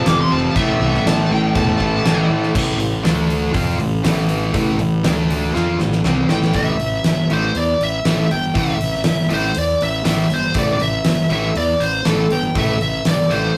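A rough rehearsal-room recording with light reverb and saturated grit opens this driving, aggressive hard rock excerpt in a straight four. A huge arena drum kit sits up front, its fat snare and punchy kick booming in a big room alongside crash cymbal and hi-hat, with a drum fill from 5.5 to 6.5 seconds. Beneath it, a fuzz-soaked fingered electric bass adds a dark, round low end, while a bright distorted electric guitar and a hollow-body semi-hollow guitar in the background pick out the riff. A lo-fi, double-tracked garage guitar plays the riff only for the opening 2.5 seconds. Up front, a bluesy overdriven lead guitar with a distorted, picked tone carries the melody, sounding briefly at the start and then returning at 6.3 seconds through the close.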